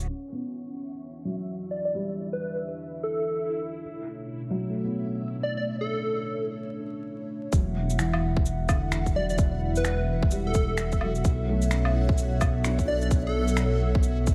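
Future garage in E dorian at 129 BPM, this wistful, melancholic passage moves with a swung 16th-note feel over Em9 and Bm9 chords. A felt-muted upright piano sits in the background, soft and intimate with audible action noise and vintage 12-bit sampler grit, while a moody analog pad sustains chords with chorus and a filter sweep through the opening half. A reversed, granular texture adds dreamy, swelling shimmer far behind, and from 1.7 seconds a punchy, catchy unison lead carries the melody up front with delay. After a short break, the low end arrives at 7.5 seconds: an overdriven, tight electronic kick, a deep, rumbling detuned saw bass with tube saturation, and a layered kit of electronic shaker, finger snaps and woodblock under a low-pass filter. Sidechain pumping breathes through the piano, pad and bass, and the whole mix is wrapped in light digital ambience, vinyl crackle and a low-pass filter.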